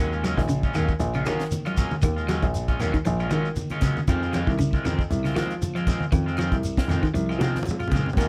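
A dry, close recording with a 1970s studio character and little reverb frames this short afrobeat excerpt, intense and funky at 117 BPM in 4/4 with a light sixteenth-note swing, moving from Ebm11 to Fm7 at 4.1 seconds. A tight funk drum kit sits up front, its high-tuned snare and tight kick driving the groove alongside hi-hat, and a drum fill arrives at 7.5 seconds. A dark grand piano carries the bass line in its low register, mellow and intimate with audible action noise and a short, vintage sustain. Two picked electric guitars at the edge of break-up share the midrange: one plays stabs coated in lush chorus, while the other, twangier, spins arpeggios through a phaser and slapback echo. Percussion fills out the texture, with low-tuned, thick-skinned congas struck by hard hands in the background, a grainy shekere heard in a live room, and woody claves kept very quiet.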